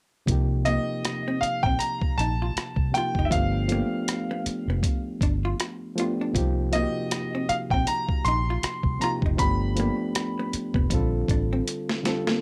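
A small, moderately live room gives this late-night, soulful neo-soul groove a close and intimate feel, with the drums, electric piano and grand piano sitting up front. The boom bap sampler-style kit sounds compressed and tape-warm, pairing a thumpy kick and medium-tuned snare with hi-hat and rim click over a 57% swing on the sixteenths, then closing on a drum fill at 11.7 s. Beneath it, a vintage foam-muted fingered bass stays low, round and punchy through an amp. The reedy electric piano is overdriven and gritty through a combo amp as it comps the Cm7 and G9 changes, and a clean, picked hollow-body jazz guitar adds a dark, compressed second line from 0.7 s. Also from 0.7 s, a brilliant baby grand carries the high melody until 10.5 s, its long sustain bathed in plate reverb, before the harmony turns to Bb69 at the close.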